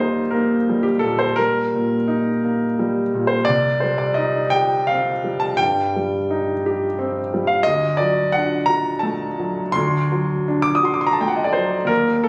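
A warm, intimate baby grand piano, sitting up front with audible action noise, carries this brief fragment of a mournful, wistful romantic nocturne in a rubato 12/8, moving from Eb to Cm at 3.5 seconds and on to D at 7.7 seconds across a range from C2 to Eb6, all heard through a phone recording in the room with a wet recital-hall reverb, a club reverb and compression.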